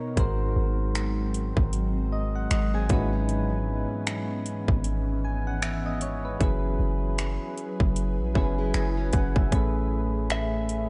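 Contemporary R&B at 77 BPM with a swung sixteenth-note feel, smooth and romantic in mood, heard as a short cut from a longer piece. Soft, round electric-piano-like synth keys with chorus and tremolo carry the accompaniment up front, adding a fill from 2.1 to 3.3 seconds, while an ethereal, detuned pad with ensemble chorus, phaser and its own reverb holds sustained chords in the background. A boomy, sine-based 808-style bass and an overdriven trap kit of finger snaps, metallic hi-hats and a hard-clipped kick sit up front from 0.2 seconds. A fingerpicked nylon-string guitar with fresh strings and audible finger squeak adds delayed arpeggios in the background between 2.7 and 9.5 seconds. The harmony moves through C#m9/G#, F#9sus4 and Amaj9, and at 10.3 seconds a clean, compressed, direct-recorded electric guitar plays a brief melody on a high E. The production is dark and warm, with light reverb and digital ambience.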